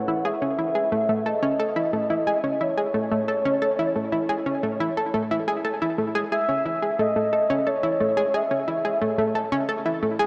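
A dark, warm production washed in a huge ambient reverb with a 7.6-second tail frames this expansive, cosmic piece of sequencer-driven space music at 89 BPM in A lydian, cut from a longer work and resting on a single A chord. An up-front analog pluck with a round sawtooth-and-square body, sub octave and fast filter-pluck attack carries the riff from A3 to A4, bright under chorus and analog delay. Above it an expressive synth lead sings a smooth, sustained melody between C#5 and F#5, its sawtooth-and-triangle tone shaded by vibrato, a moving notch, subtle chorus and analog delay until it stops at 9.7 seconds.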